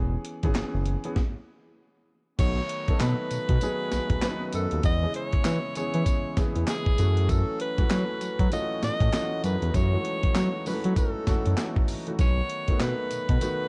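A bright, punchy alto saxophone carries the melody from 2.4 seconds, its light vibrato and scooped notes giving this confident, bouncy new jack swing cut a pop-style edge. Beneath it, a gritty, compressed breakbeat kit with a thumpy kick, medium-tuned snare, hi-hat, handclaps, tambourine and crash sits up front, joined by a smooth, mellow synth bass built from sawtooth, square and triangle tones with a touch of ring modulation. A warm baby grand piano with audible action noise and short sustain fills in the accompaniment, while a very quiet group handclap adds crisp, vintage texture. Once the horn enters, a nasal pipe organ cornet stop holds soft, romantic sustained chords. A stop from 1.2 to 2.4 seconds sets up the section change, and the harmony moves through E6, B7 and F#m7 with a swung sixteenth-note feel in a dark, small-room production.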